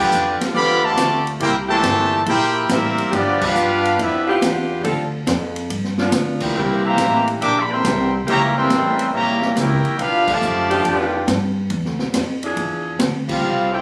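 Energetic and brassy, this cut from a longer big band swing piece moves at 140 BPM in 4/4 with a strong swing feel. A bright, up-front trumpet section carries the melody with light vibrato, while a more distant, roomy trombone section plays a second line beneath it and a warm saxophone section holds sustained chords until 13.0 seconds. A woody, growly upright bass, plucked pizzicato, anchors the bottom, and a natural-sounding drum kit swings along with a punchy kick, medium-tuned snare, hi-hat, ride and crash until 13.4 seconds. The full band hits accents together at points such as 3.3 and 10.2 seconds, over a bluesy progression built on G7 and C7 that passes through C#dim7 and closes on E7b9. Captured on a phone in the room, the sound carries a club-like reverb that gives the ensemble a roomy sense of space.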